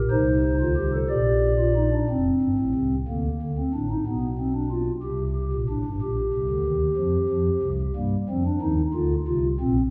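Classical, baroque-style three-part fugue in a stately yet lively 6/8, played solo on a pipe organ's stopped flute from 0.1 to 9.8 seconds. The soft, hollow flute stops are voiced in a romantic manner and sit up front, spanning from deep bass to the upper treble as the harmony moves from C minor through F, a diminished chord and E-flat before arriving at D minor. A wet reverb places the organ further back in a spacious room with a dulled top end, and the passage is cut from a longer piece.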